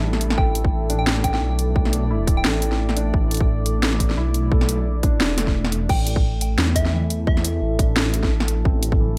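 A half-time drum and bass groove at 174 BPM, lightly swung, drives this spacious, tense excerpt, with a hard-clipped electronic kick entering at 0.4 seconds beneath an overdriven, up-front kit of cracking snare, bright hats and crash cymbal that carries a small-room character. A rumbling, detuned saw bass sits forward in the mix, while a deep, moody pad holds sustained chords with chorus, 12-bit sampler grit and sidechain pumping, and a felt-muted upright piano plays soft arpeggios in the background through diffuse delay, its action noise audible. A pure FM bell melody with chorus, phaser and delay appears from 0.4 to 2.6 seconds and again from 5.9 seconds, floating over the drop in a light digital ambience.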